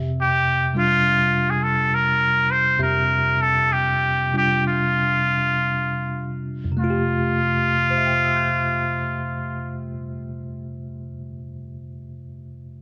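Intimate and tender, this fragment of a slow swung jazz ballad in F major drifts between 53 and 72 BPM, easing down over its first 6.8 seconds as the harmony moves from Fsus2 to Fmaj9. A bell-like, clean tine electric piano, heard as if through its built-in speakers, carries the accompaniment across a broad register throughout, while a nasal, vintage-toned trumpet with a straight mute sings the solo melody up front from 0.2 to 9.8 seconds. A light reverb gives the pair a close, softly lit room.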